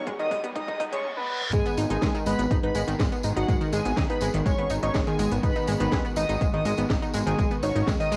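A straight 4/4 pulse at 123 BPM drives this cinematic, dramatic melodic techno piece in G# minor, cut from a longer track. It opens on a 1.5-second build-up in which a punchy, overdriven electronic kick and a techno kit with cracking snare, smooth hats and toms play a fill, while an electronic riser and reverse cymbal and a briefly heard, nostalgic, lo-fi warbly tape-like pad sit beneath a fat, mellow analog lead whose filter sweeps. At 1.5 seconds the drop arrives with a thick, detuned analog bass and a jingly tambourine; throughout, a bright, up-front analog pluck plays chorused arpeggios with tape echo, a distant chamber violin section carries a focused second line, a very quiet brassy pad adds stabs over a smooth studio string section's sustained chords, and from 5.7 seconds a barely audible vintage analog drone hums beneath the cassette-tinged, sidechain-pumped mix.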